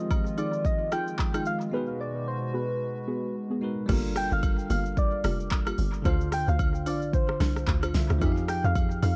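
Deep and late-night, this amapiano cut at 111 BPM sets a round, keys-like synth lead with chorus, phaser and analog delay over a bell-like tine electric piano, a dark, soft pluck in the background, a hollow, flute-like pad that sustains its chords until 3.9 seconds, an up-front deep house drum kit with a deep kick and fat snare, dry agogo bells and woodblock with echoes, and a tight, punchy log drum bass that arrives with the drop at 3.9 seconds, all in an echo-heavy mix with little reverb.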